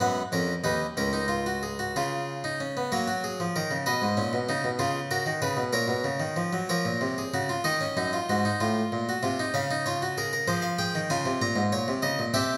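Serious and driving, this short cut from a longer baroque-style three-part fugue in 6/8 features a solo harpsichord, plucked and French in style, with a nasal, thin, bright tone placed up front, ranging from deep bass to high treble as it moves from major into a darker minor passage at 6.7 seconds, all within a reverberant recital hall.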